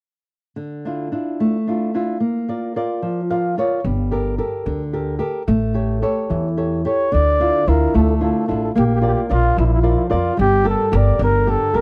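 This dry, close recording has the intimate feel of a 1970s studio, with every part placed up front. It is a passionate, wistful piece of Italian folk music in 6/8, cut from a longer piece. A dark, thumb-plucked flamenco guitar opens alone at 0.6 seconds, laying down the accompaniment with a brief nylon-string fill before a woody, pizzicato upright bass with steel strings joins at 3.8 seconds. The harmony moves through Dmadd9, Bb, Gmadd9 and A7, then starts the cycle again as the second section begins. At 6.9 seconds a mellow, close-miked flugelhorn enters as the solo melody voice, played in a classical style.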